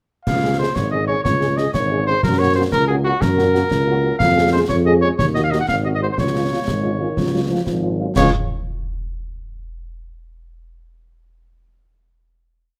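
Set in a six-eight pulse, this short, festive march for wind band moves with a straight, spirited stride from its first bar at 0.3 seconds. A warm cornet carries the melody up front in a classical style, distant and roomy, while a tuba anchors the bass on the beats with soft attacks, light vibrato and sustained notes. Behind them, a dark French horn section sits in the background, filling in with after-beat chords and sustained harmonies. Concert snare drum, clash cymbals and concert bass drum sound close and dry, with a marching snare over a bass drum on the beat and shadowy cymbals. A dark euphonium enters at 6.7 seconds with a smooth top and gentle vibrato, answering at the phrase end before the band settles on a final chord at 8.2 seconds. A moderate large-studio reverb lends the ensemble a sense of space.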